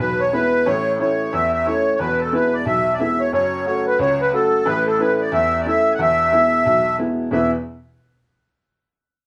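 Set in a wet studio reverb with the band playing live in one room, this rollicking, lively Celtic folk fragment moves at 180 BPM in a swung 4/4 in E major. A reedy, sweet accordion with light tremolo tuning carries the melody up front over a woody, slightly detuned upright piano accompaniment, and both play until 7.5 seconds as the chords move among E, A and F#m.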